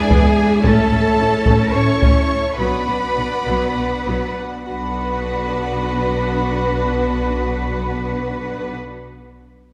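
In 7/8 at 190-224 BPM counted in eighths, this dark, epic cinematic orchestral cue in B minor slows over its first 4.7 seconds, moving through E7, A and B minor chords. A taiko ensemble struck with hard sticks booms from 0.1 to 2.5 seconds beneath sustained chords from a very quiet, dark French horn section and an even studio string section, while expressive bowed cellos and a focused double bass section carry the bass and lush violas fill in the accompaniment. In the background, a symphonic violin section sings the melody with portamento and a soft attack, shadowed on second lines by a smooth chamber violin section and a pure, silvery concert flute, in a wet scoring-stage reverb heard from further back in the room.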